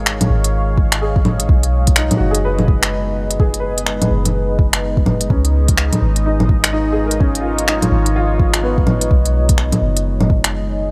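A soft, round 808-style bass sits up front through this melancholic, wistful future garage excerpt, its dark sine tone warmed by tube saturation and breathing with sidechain pumping at 126 BPM in G# dorian. Above it, a deep, moody ambient pad holds sustained chords throughout, its detuned sawtooth unison and sub octave thickened by chorus and its own reverb, evolving as the harmony moves between C#add9 and G#m. A clear, woody upright piano, worn and slightly detuned, plays accompaniment until 9.3 seconds, roughened by vintage 12-bit sampler grit and trailed by digital delay. The organic electronic drum kit, up front with bongos, finger snaps and smooth hi-hats, carries a 62% swing on the sixteenths, while a soft electronic kick joins at 0.8 seconds; both drum parts are overdriven and re-recorded in a small room. Light reverb gives the whole piece a gentle, intimate space.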